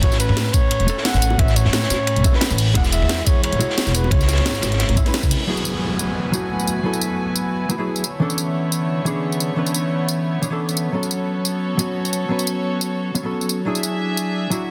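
A straight 4/4 liquid drum and bass groove runs at 176 BPM in F# minor, cut from a longer piece and carrying a melancholic, lush mood. The opening 5.5 seconds are a full drop: a thumpy, gritty electronic kick with tape warmth sits under a layered electronic kit with a cracking snare, hi-hat and tambourine, while a darker, saturated breakbeat kit adds filtered hats, ride and snare in a small room, and round, low-tuned bongos tap in the background. Up front, a woody pizzicato upright bass anchors chords moving from A69 through E9 to C#m7, a clean, fingered hollow-body jazz guitar comps with tape echo, and a breathy, whispered flugelhorn sings a short intimate line with delay before the band hits an accent at 5.1 seconds. From 5.5 seconds the bass, breakbeat kit and kick drop away as a downlifter sweeps in and a reedy chamber string section enters with bowed sustained chords, colored by 12-bit sampler grit and sidechain pumping. 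The guitar and electronic kit carry on beneath the strings through F#m11, Bm11 and back to A69 and E9, all inside a dense, heavily limited modern master with light reverb.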